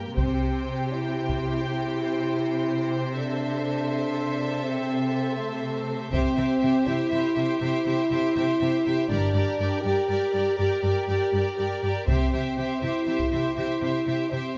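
Violins, violas, cellos and a dark French horn section open together at once, with the double basses and a taiko ensemble striking in at 0.2 seconds, setting a heroic, triumphant tone in this cinematic orchestral film-score passage cut from a longer piece. The music moves at 81 BPM in a straight 12/8, grounded in C mixolydian, with harmony shifting from C through Am/C to Gm before settling back on C. A lush, vibrato-rich violin section carries the melody up high while a second, clearer violin line fills in beneath it, both bowed with focused ensemble tone, alongside smooth, even bowed violas. The horns sit forward in the mix, soft in attack and slightly distant and roomy, holding sustained chords, while a full-bodied cello section and the background double basses anchor the low end. Heavy-stick taiko hits punctuate the phrase starts, returning at 6.1 and 12.1 seconds, and the whole passage sits in a moderate recital-hall reverb with a rounded, softened top end.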